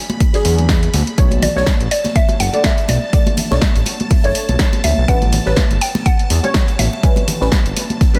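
Deep house at 123 BPM in B minor, moody and smooth, with a swung 16th-note feel, cut from a longer piece as chords move from E9 to Bm9 and then A9 at 5.1 seconds. An up-front, deep electronic kick anchors a punchy, tape-warm analog drum machine, bright high-tuned congas with hard hands, and a very quiet acoustic arena kit, while a smooth, warm sawtooth synth bass with tube saturation and sidechain pumping sits beneath dark, detuned dub chord stabs coloured by phaser, lush chorus and dub echo. Shimmering vintage string-machine violins hover in the background, and from 1.4 seconds a woody, warbling FM mallet pluck carries the melody through chorus and dub echo, all in light small-room ambience.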